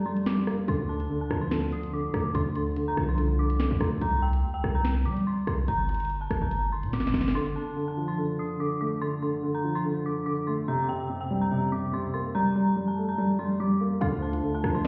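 An eerie, inharmonic synth bell carries the melody in this menacing, cold half-time drill cut, over a mellow baby grand piano with audible action noise, a punchy, heavy 808 bass and an electronic kit with a sharp snare and bright hats; the bass drops out at 7.3 seconds and the drums at 7.4 seconds, and both return at 14.0 seconds alongside a faint, warbling lo-fi pluck and a hollow, flute-like pad, with the mix heard muffled as if through a wall in a stone room.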